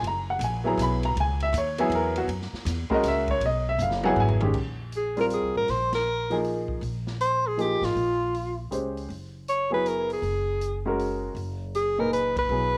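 A cool, intense modal jazz waltz opens with an intimate baby grand piano, its action noise audible, over a woody pizzicato upright bass and a swinging big-band drum kit with a punchy kick, all set in light studio reverb with the character of a home cassette recording. After a drum fill closes the opening passage, a breathy alto saxophone enters at 5.0 seconds, playing a clear, up-front solo with vibrato, soft attacks and scooped notes. Band accents punctuate the texture over suspended ninth chords before this fragment of a longer piece cuts off.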